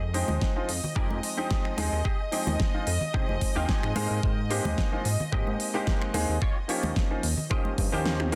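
Cosmic and groovy, this nu-disco excerpt in F minor moves at 110 BPM with a light 16th-note swing, built on a knocking, up-front electronic kick and a layered pop drum kit with a fat snare, crisp hats, finger snaps and toms, while dry, hard-handed congas sit in the background, a glossy chorused synth bass carries the low end, an intimate grand piano with audible action noise plays filtered, delayed accompaniment, a twangy direct-recorded clean guitar riff adds a fill at 3.4 seconds, and a biting string section holds sustained chords that pump with sidechain compression over Fm9, Abmaj9 and Eb9 before the kick drops out for a drum fill at 8.1 seconds.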